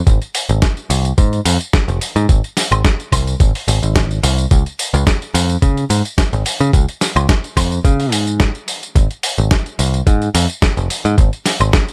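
Nu-disco at 108 BPM in 4/4, this short cut from a longer piece has a sunny, groovy mood, with a light swing on the sixteenths and tuning set slightly sharp at A4 = 441 Hz. A picked electric bass carries the low end from 0.1 s to 11.7 s, ranging from F1 to Db3 with a bright, direct and punchy tone that sits up front. A dusty soul drum kit in a sampler style supplies hi-hat, a medium-tuned snare, tambourine and woodblock, its sound compressed, gritty and tape-warm. Alongside it, an electronic kick drum delivers a thumpy, up-front pulse with the same grainy, sampled character, both drum parts running from 0.1 s to 11.9 s. The room is nearly dry, keeping the rhythm section close and immediate.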